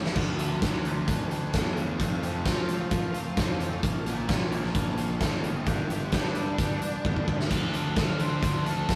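A rough rehearsal-room recording with warm saturation and moderate reverb frames this dark, angsty cut of quiet-loud alternative rock in D minor, moving at 131 BPM in straight 4/4 through Dm, F, Bbm and G. An up-front acoustic kit with a punchy kick and fat snare opens on a fill and plays another at 7.0 seconds, while a growly overdriven bass, a very quiet thick fuzz guitar riff and a dark octave-fuzz lead melody sit behind it. A bright, twangy, clean guitar picks arpeggios in the background until 7.5 seconds, when a scooped high-gain guitar riff enters.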